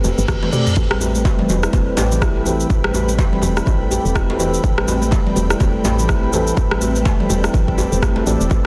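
A dense, heavily limited modern mix sits in light reverb and digital ambience for this hypnotic, driving afro house excerpt, cut from a longer piece, at 124 BPM in 4/4 with a swung sixteenth feel in A minor. An electronic reverse cymbal opens the clip and is gone by 0.8 seconds, while a drum fill runs from 0.3 to 0.8 seconds as the overdriven electronic kick enters, deep and prominent, alongside an overdriven, produced afro-pop kit of rim clicks, shaker and toms. Tight, cracking djembe sits compressed in the background, and bright, high-tuned congas struck with hard hands sound distant and very quiet, as if from a large room. Beneath them a woody, round FM bass with a fast, decaying attack pumps against the kick, and a soft, flute-like tonewheel organ plays percussive stabs coloured by chorus vibrato, a slow rotary speaker and tape echo. A ringing, meditative handpan with sharp finger strokes arpeggiates through tape echo and vintage 12-bit sampler grit, and from 1.6 seconds an ethereal, airy pad of detuned, wave-folded saws swells in slowly to hold an Am9 chord in ensemble chorus and its own reverb.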